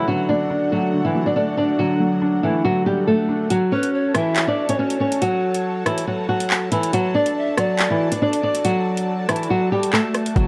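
A half-time drill groove at 140 BPM arrives at 3.5 seconds, with metallic hats, handclaps and rim clicks up front while the knocking kick stays muted until a distorted, saturated 808-style bass hits at 10.4 seconds in this dark, menacing hip hop excerpt. Up front, a fingerpicked acoustic flamenco guitar carries the melody through a low-pass filter over an airy, breathy, warbling pad with chorus, and a soft, felt-muted upright piano accompanies only until the drums enter. A distant bamboo pan flute with vibrato and chiff adds a second line through tape echo, and light small-room reverb frames the mix.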